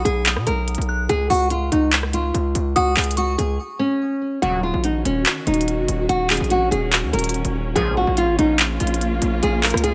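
Trap hip hop at 144 BPM in a half-time feel, menacing and hard-hitting in Eb minor, this cut from a longer piece sets a bright, fingerpicked nylon-string guitar melody, softened by a low-pass filter and delay, over a saturated, heavy 808-style bass and crisp, up-front trap drums with handclaps, hi-hat and rim click, while a crystalline FM bell line with chorus sparkles high above until 4.0 seconds, and after a brief break, lush bowed strings with vibrato enter at 4.4 seconds alongside short detuned sawtooth polysynth stabs with a resonant filter sweep, set in a light digital ambience.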